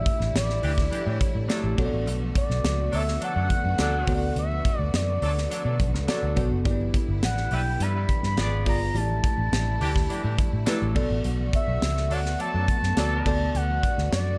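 A dark, warm production with small room ambience frames this glossy, breezy excerpt of polished 1980s jazz-funk pop, moving at 104 BPM in a straight 4/4 in D major. An expressive synth lead carries the melody from the first moment, its smooth sawtooth-and-triangle tone shaded by a moving notch, vibrato and chorus. Beneath it, a sparkling, bell-like FM electric piano with a lush chorus plays the accompaniment, while a clear studio string section holds bowed, sustained chords in the background. An airy, punchy, up-front drum kit with a high-tuned snare drives the groove alongside very quiet, thick-skinned congas, and a round, foam-muted fingered electric bass sits prominently in the mix. A tight, clear horn section with light vibrato adds a second line from 0.6 s, as the harmony moves through A7sus4, Bm7, D6 and G6, with a passing G#dim7 before the cycle returns.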